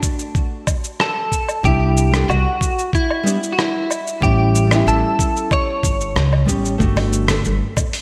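Sunny and relaxed, this sunset chillout piece at 93 BPM in G major sets a dark, fingerpicked nylon-string guitar with delay over a gritty, tape-tinged sampler-style soul kit of cabasa, hi-hat, rim click and woodblock in gated reverb, plus a thumpy electronic kick; a bright, chorused clean electric guitar melody enters at 1.0 s, a woody pizzicato upright bass sits up front from 1.6 s through Cmaj7, A7 and Gmaj9 chords, and very quiet hard-hand congas arrive at 7.0 s, inside a lush hall and a crisp 1980s-style digital sheen.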